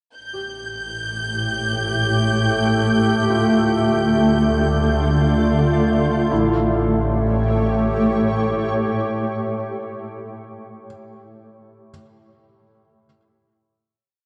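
Ambient music in free time, this short, luminous piece floats in a wet cathedral reverb that gives every sound a long, glowing tail. A shimmering pad sits up front, its slow-attack, granular tone touched with chorus and an octave-up sparkle as it holds slowly shifting chords, moving from A7 to Dm and back to A7 at 6.3 seconds for the final chord. Beneath it, a bowed double bass section fades in from 0.2 seconds with a clear, focused ensemble sound, sustaining root notes with vibrato. High above, a lush symphonic violin section holds a single note from the opening until 6.3 seconds. A felt-muted upright piano, also fading in, scatters very quiet, mellow arpeggio notes throughout and is the last part heard, closing out the piece with an intimate touch.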